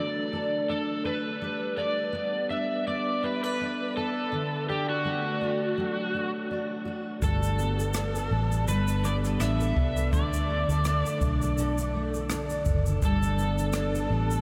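Drenched in a huge ambient reverb with an 8.0-second tail, this dreamy acoustic pop excerpt has a floating sound. It moves at an easy-going 83 BPM in 4/4 with a light sixteenth-note swing, sitting in G major and drifting between D, Gadd9 and D5 chords with a heartfelt mood. Up front, a full-bodied, double-tracked jumbo steel-string acoustic guitar is fingerpicked beneath an overdriven electric slide guitar, whose warm melody carries a subtle chorus and a diffuse ambient delay. At 7.2 seconds a dark, round, foam-muted vintage electric bass enters with an amped tone, alongside a small-room jazz brush kit with a boomy kick, rim click and shaker. A crisp, compressed group handclap slips in at 13.7 seconds, barely audible.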